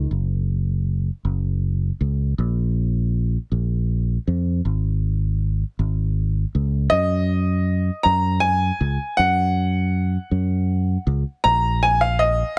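Uplifting and nostalgic, this indie folk excerpt moves at a slow 53 BPM in a straight 6/8, with a fingered electric bass alone at first, dark, round and up front, carrying a build-up over Gb5, Bb5 and Absus4 chords. At 6.9 s a bright upright piano enters with the melody, its brilliant, woody tone intimate and polished, with short sustain and audible action noise. Studio ambience gives the close, present sound a natural room feel.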